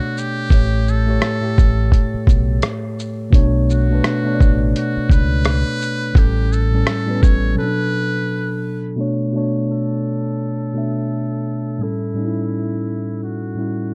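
A buzzy, metal-muted trumpet with light vibrato and scooped notes plays a jazz-style solo with analog delay over a mellow, clean tine electric piano in this melancholic, reflective lo-fi hip hop excerpt at 85 BPM in B minor, where a muffled, pitched-down sampler-style drum kit with a thumpy kick and a round, punchy dub bass carry a swung 4/4 groove until they drop out by 7.5 seconds, leaving a brief break before a filter sweep runs from 9.0 seconds to the end of this dark, dry production.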